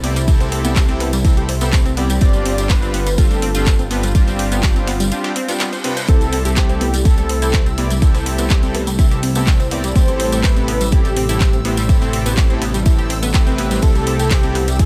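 A punchy, up-front electronic kick drives this hopeful, uplifting progressive house excerpt at 124 BPM in a straight 4/4, layered with a pop kit's handclaps, bright hats and ride, a jingly, close tambourine, and a very quiet, gritty sampler-style kit of hi-hat, ride and snare re-recorded in a large room. A fat, wave-folded analog bass pumps under a mellow sequenced arpeggio with chorus, cassette tape and dub echo, while airy supersaw stabs and a very quiet, smooth analog pad carry chords moving from C6 through G7sus4 and Am7. A bold, dark unison lead with vibrato and a moving notch enters at 2.2 seconds, a reverse cymbal fills a short break at 5.5 seconds, and a dreamy, granular backwards texture swells in high from 7.4 seconds, all in a dry mix.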